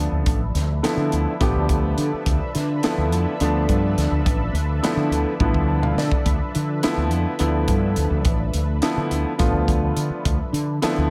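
A clear grand piano, a round, dark fretless bass with analog chorus and a silky, bright string pad shimmering with ensemble chorus and phaser all sound together over a Dm69 chord in this slick, nocturnal electric jazz fusion piece, cut from a longer piece and set in a straight 7/8. A crisp fusion drum kit joins at 0.3 seconds with a punchy kick, high-tuned snare, hi-hat and toms in a small, pumping room, sitting up front beside the piano and bass. Around 5.4 seconds the drums and piano both break into fills, all under a light reverb.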